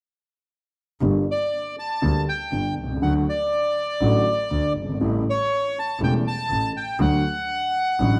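Passionate and melancholic, this brief tango excerpt moves at a rubato 120 BPM in 4/4, tuned to A4 = 443 Hz, over a progression of Gm, D, A7 and back to D. A mellow, vintage baby grand piano with long sustain and a clear, focused bowed double bass with vibrato both begin at 1.0 seconds. At 1.3 seconds a reedy, smooth bandoneon joins up front with the high melody, all set in a moderate echo-chamber reverb with small-room ambience.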